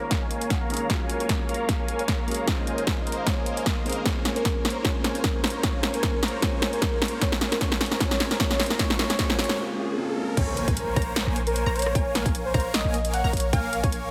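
Huge, detuned supersaw chords carry this dreamy, emotional future bass passage in Bb minor, cut from a longer piece, pumping with sidechain and opened up by a filter sweep through the build-up. At 152 BPM in a half-time 4/4 feel with light swing on the 16ths, a punchy, up-front electronic kick and a layered dance kit of snare, rim click, hi-hat and crash drive the groove, with a drum fill running through the build. In the background, a velvety, smooth synth lead with chorus, vibrato and delay sings the melody under its own filter sweep. Beneath it, a clear, boxy baby grand piano accompanies through the build-up and the short break that begins at 9.6 seconds, and a very quiet riser and impact mark the approach to the drop and its arrival. At 10.4 seconds the drop arrives over Bbm9 and Bbm7, bringing in a deep, boomy 808-style bass with a noise layer and a lush unison pluck playing high arpeggios. 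A moderate hall reverb and a heavily compressed, radio-like sound give the mix a dense, polished sheen.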